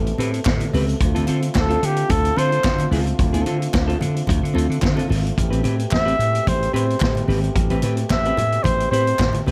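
A studio-room recording with a punchy, up-front vintage drum kit with a rolled-off top, this is a driving, danceable disco excerpt in A minor at 110 BPM, moving from Am9 to Dm7 at 1.0 seconds and back to Am9 at 5.4 seconds. A bright, amped slap bass and a dark, clean semi-hollow electric guitar with lush chorus carry the groove, while a distant, roomy French horn section holds sustained chords underneath, and very quiet low-tuned congas and crisp, dry group handclaps fill in the percussion. From 1.6 seconds a warm, smooth-topped flugelhorn with light vibrato takes the melody up front.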